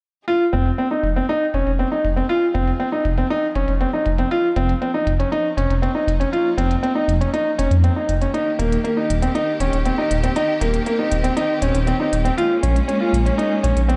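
A straight 4/4 pulse of clicky, overdriven electronic hi-hats, filtered and dulled, ticks quietly beneath this melancholic, hypnotic piano and strings electronica, where a woody, vintage upright piano riff with digital delay sits up front beside a deep, rumbling detuned saw bass under a filter sweep, while a focused, bowed studio string section fades in with sustained chords in a dark production set in a moderate, lush hall reverb.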